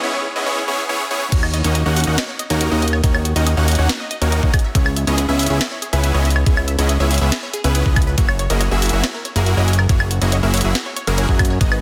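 Huge, lush supersaw chords carry this dreamy, bittersweet future bass passage at 140 BPM in a half-time feel, pumping with sidechain and trailed by delay over a progression from C#m7 through D#m7 to F#9. A worn, slightly out-of-tune electric piano sits very quietly in the opening break and build-up, and at 1.3 s the drop lands with a fat, saturated analog bass up front, a knocking layered kick, a trap kit with a sharp soft-clipped snare, bright hats, crash and woodblock, and a punchy unison pluck playing arpeggios in the background with a moving notch. Light digital ambience surrounds a dense, heavily limited modern master in this short cut from a longer piece.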